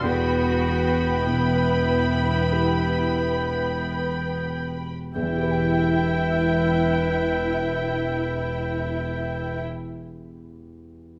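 A brief stretch of sorrowful, longing film score for orchestra opens on an E minor chord, moving at a slow, rubato pace of about 44-51 BPM in 4/4 and slowing down through its first 5.1 seconds. Muted violins carry the melody high in their range, veiled and distant with vibrato and a soft attack, while a second violin section sits in the background beneath them. A clarinet and a cor anglais add solo second lines in a classical style, the cor anglais with light vibrato and a smooth top. Con sordino violas fill out the middle with a dark, bowed accompaniment, while veiled, distant cellos join the double basses on the bass, the basses holding a low E1 up front and close. A mellow, vintage baby grand piano with long sustain plays accompaniment in the background and carries on alone after the orchestra stops at 9.6 seconds, ringing until 11.2 seconds in the wet reverb of a recital hall.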